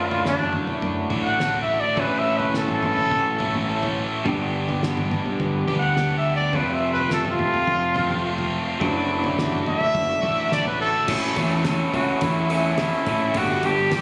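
A straight 4/4 pulse at 105 BPM comes from a cloth-damped, thuddy drum kit that enters at 0.1 s, with a fat snare, tight kick, toms, hi-hat and dark crash cymbal, all dry and rolled-off at the top. This carefree, jangly indie rock passage in D major is cut from a longer piece and moves through chords such as Dadd9/F#, A6, G and F. A growling fingered bass, round and punchy with overdrive, anchors the low end beneath two picked guitar riffs. One guitar is a bright, cranked stack tone with overdrive and spring reverb, while the other is a twangy, lo-fi, slightly broken-up sound from a small old amp with subtle chorus. Up front, a warm trumpet with vibrato and digital delay plays a pop-style solo from the start until 11.1 s, its tone distant and roomy, while a very quiet analog pad holds sustained sawtooth chords that warble and evolve with a vintage, detuned, mellow character. The mix carries a light small-room ambience, compression and the feel of a phone recording made in the room.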